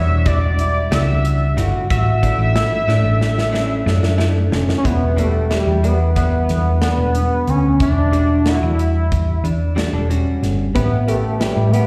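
Driving and brooding, this progressive instrumental piece moves in 9/8 at 183 BPM counted in eighths, set in E dorian with a straight feel, and is cut from a longer performance heard live through a venue's PA with recital hall reverb. An octave-doubled lead carries the melody up front, its bold, retro sawtooth-and-sine tone detuned and wave-folded, with a fast attack, sustained notes, vibrato, chorus, slapback and tape echo. Beneath it, a clean, compressed hollow-body jazz guitar plays picked accompaniment with slapback echo, while a dark, fingered electric guitar spins arpeggios through slapback and tape echo. A round, punchy short-scale hollow-body bass sits prominently in the low end, and a studio drum kit with a medium-tuned snare and a thumping kick joins at 0.3 seconds. The harmony moves from Emadd9 to Asus4, then a drum fill from 2.9 to 4.8 seconds leads into a new section on Em7 that turns to A7 at 10.8 seconds.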